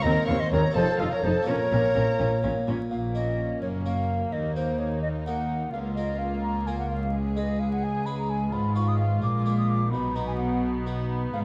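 In a driving 6/8 at 85 BPM, this dramatic baroque-style concerto movement in Bb minor, cut from a longer piece, sets a bright, airy wooden flute up front over a background violin melody and a close second violin line with gut-string tone and light vibrato, a brilliant plucked harpsichord with octave strings, a distant viola section, and a rich, reedy cello and double bass foundation, heard through recital hall reverb and the warble, pitch drift and crackle of worn old tape and vinyl.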